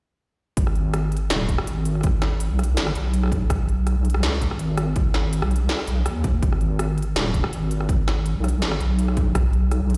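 Half-time drum and bass at 164 BPM in G# minor, this short cut from a longer piece carries a heavy, dark mood from the start. A deep, soft wobble bass holds the front of the mix from 0.6 seconds onward, its detuned square and sine tones sitting low between D#1 and D#2 with a fast attack, sustained notes, compression and a chorus effect colouring its dusky weight. An electronic kick drum lands heavy and tape-warm from 0.6 to 9.4 seconds, while an industrial drum kit supplies a clanging snare, crisp hi-hats and rim clicks further back in the balance. Both drum parts carry a small-room ambience, and the whole track sounds as though it is played through a big sound system in a bare stone room, giving it a lightly reverberant presence.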